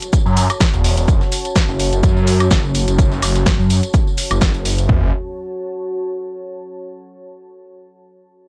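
Dry, up-front and punchy, this swaggering, aggressive bass house fragment in F# minor at 126 BPM with a swung 16th feel layers an overdriven kick and toms, a punchy snare with bright hi-hats, tambourine and woodblock, and a very quiet, gritty sampler-style kit of hi-hat, shaker and snare under a swirling, thick, phased and saturated detuned saw bass that pumps against the kick through a filter sweep, while a barely audible downlifter opens the piece and a deep, moody, chorused ambient pad breathes underneath before carrying on alone from 5.1 s to 6.8 s.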